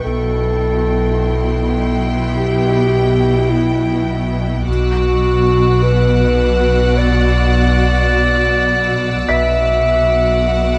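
Close, detailed microphones and light reverb give this short cinematic excerpt a clear, intimate sound, with an uneasy, eerie mood in B minor at a slow 52 BPM in straight 4/4, tuned slightly below standard pitch. Up front, a dark, roomy solo clarinet carries a classical-style second line. Behind it, a distant, focused violin section holds the melody with vibrato. A second violin section adds a smooth, high texture, while a rich viola section fills the middle with light vibrato. Cello and double bass sections anchor the low end on B, the basses soft in attack and lush in the background with expressive portamento, doubled by a thick, saturated sub-bass drone. A felt-muted upright piano adds mellow background texture, its action noise audible, as the harmony moves from Em/B to Bm at 4.7 seconds.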